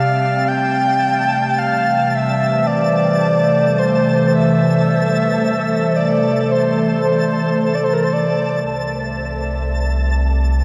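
Warm and weightless, this short ambient passage from a longer piece drifts at 55 BPM in 4/4, resting on a Cadd9 chord in C major. Up front, a breathy, flute-like synth lead carries the melody between Bb4 and G5, softened by vibrato, chorus, tremolo and tape echo. Beneath it, a warbling, tape-like pad holds nostalgic, lo-fi chords with a slow attack and long release. A calm, organ-like drone sits low in the mix and ends at 8.8 seconds, while a faint granular texture twinkles on a high A5 with an octave-up shimmer. At 8.6 seconds a deep, round sub bass enters on a low C and sustains to the close at 10.6 seconds. The whole mix is bathed in a huge, wet reverb that leaves each sound hanging in the air.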